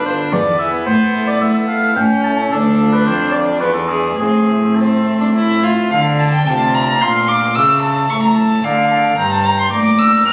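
A close, nasal violin with an airy bow and gut-string tone stands out in this flowing, grave baroque-style sonata movement, sharing the foreground with a rich, up-front cello that carries the bass. A distant, roomy oboe sings the melody in a classical style, while a pipe organ on light, bright flute stops fills in the accompaniment with a romantic voicing. The music moves in 3/4 at 110 BPM with a rubato feel, starting in A minor and turning to D minor at 5.9 s, where the opening material returns. Cut from a longer piece, the passage passes through E7 and A7 back to A minor before settling on D minor and touching G minor near its close. A wet recital hall reverb surrounds the ensemble, and the sound has the slightly distant, phone-in-the-room quality of a live capture.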